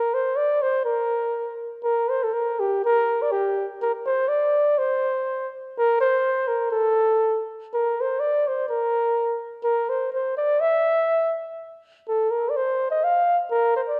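A mellow flugelhorn plays solo and up front in this jolly, festive alpine folk excerpt in Bb major, moving at 124 BPM in a straight 2/4 with light vibrato, a smooth top and classical-style phrasing across a G4 to F5 range, set in a wet scoring stage reverb through its 14.0 seconds.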